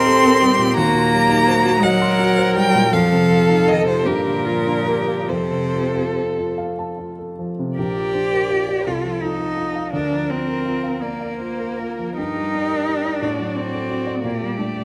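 In a 6/8 with free rubato, around 45 to 61 dotted-quarter beats per minute, this serene slow movement for piano quartet in Bb major unfolds as a short section cut from a longer piece, shifting to a new passage at 7.8 seconds. A close, expressive violin carries the melody with vibrato, soft attacks and portamento, while a rich, up-front cello sings a second line with similar sliding expressiveness. A smooth, even viola and a dark, mellow baby grand piano, intimate and long-sustaining with audible action noise, fill out the accompaniment, all set in a moderate concert-hall reverb captured by close, detailed microphones.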